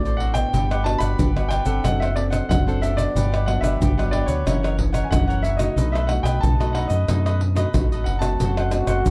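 A clear concert grand piano with plate reverb carries the melody through this yearning, bittersweet samba and choro, over crisp picked cavaquinho and fingerpicked classical nylon-string guitar. A round, direct fingered electric bass sits up front beside a small-room percussion group of egg shaker, pandeiro, tamborim and deep surdo, as the harmony moves through D7, Gmaj7, F#7 and B7. At 8.4 s a growling, raspy trombone enters on a scooped F#4 over an F#dim chord, within a dark production with light reverb.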